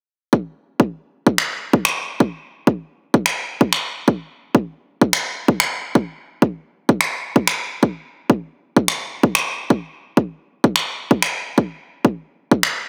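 Euphoric and anthemic, this festival progressive house excerpt drives along in a straight four-four feel, built entirely on percussion. A punchy, overdriven electronic kick sits up front from 0.3 seconds, its layered sound trimmed by a high-pass filter, and layered electronic finger snaps join at 1.4 seconds, gritty with overdrive and carrying the ambience of a large room. The whole mix is dreamy and soaked in a lush hall reverb.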